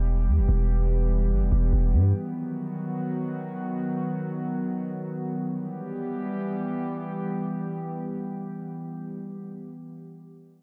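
The recording is dark and lightly reverberant, with a touch of studio reverb over a warm core. This cold, menacing hip hop fragment, cut from a longer piece, moves in free time in E harmonic minor, tuned to A4 = 443 Hz. A warbling, lo-fi, tape-like pad of detuned sawtooth and triangle tones holds sustained chords up front for the full 9.5 seconds, fading in slowly and releasing long through chorus and its own reverb for a nostalgic, mellow glow. Beneath it, a deep, mellow 808-style bass with a sine tone and a fast attack rings out and decays, sitting up front until 2.1 seconds. The harmony moves from E minor to B major at 2.1 seconds, then settles back on E minor as a new section opens at 5.5 seconds.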